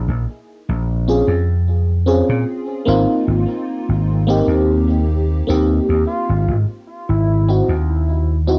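A lightly swung 16th-note groove at 75 BPM in 4/4 drifts through this short vaporwave excerpt in Ab major, cut from a longer piece and carrying a dreamy, faded mood. A vintage slap bass opens alone, round, punchy and up front in its low register. At 1.1 s an FM electric piano layered with a soft pad joins as accompaniment, lush and detuned with a fast attack that decays, colored by phaser, analog chorus, cassette tape and tape echo. At 6.1 s a velvety synth lead carries a brief, mellow melody until 7.6 s, smooth and sustained with vibrato, chorus, cassette tape and tape echo, sitting lower in the mix than the other parts. The harmony moves from Bbm7 to Abmaj7 and then to Ab7b13, all wrapped in light reverb and the hazy character of a home cassette recording.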